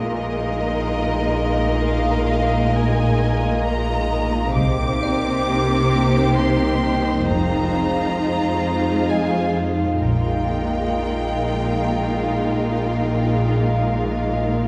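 Cinematic and uneasy, this mysterious excerpt in a slow 3/4 sets two bowed violin sections with vibrato, one carrying the melody and a lush, smooth-topped one beneath it, over close, expressive violas, glassy, ethereal glass harmonica chords with slow attacks and beating, and a distant cello section whose soft attacks and portamento anchor the bass. A nasal, evolving analog drone with chorus and pulse-width modulation hums underneath, while a tinkling, slightly out-of-tune music box sits very quietly in the texture. A double bass section joins in the background from 4.6 to 10.9 seconds, all within a dark production and a reverberant concert hall.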